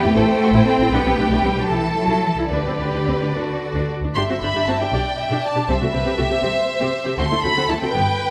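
The recording sits in a wet concert hall acoustic with a long reverb tail, and it is cut from a longer piece. It is a quick classical-period movement for string orchestra in G major and 6/8, moving at 72-80 BPM in dotted quarters with a rubato feel and an urgent, stormy mood. Two violin sections carry the upper lines: the melody violins sit up front with a soft attack, expressive vibrato and a lush, smooth top, while the second violins add a focused, bowed line beneath them. A distant viola section supplies accompaniment with expressive vibrato and portamento, and the rich, focused cello section and clear, intense double basses share the bass. The harmony moves from Am7 through G/B, Am, G/D and D before the phrase repeats from about 4.1 seconds over G, C and a closing D9, with the lower strings stopping at 8.0 seconds and the violins holding on until 8.3 seconds.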